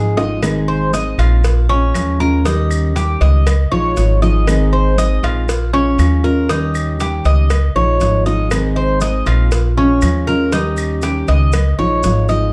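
A dark production with light reverb frames this relaxed, danceable cut from a longer piece of Cuban son and guajira, moving at 119 BPM in Ab major. Up front, the upright bass plays pizzicato on steel strings with a woody low end, while the Cuban tres picks mellow, metallic arpeggios on its double strings, some of them octave-doubled. A full-bodied dreadnought steel-string guitar, fingerpicked, supplies the accompaniment alongside them. The percussion enters with a drum fill at 0.2 seconds: tight, high-tuned bongos and cowbell in a small room, with grainy maracas in the background and distant claves joining there at 0.4 seconds. The harmony cycles through Ab, Bbm7, Eb7 and Dbadd9 in an easygoing, steady loop.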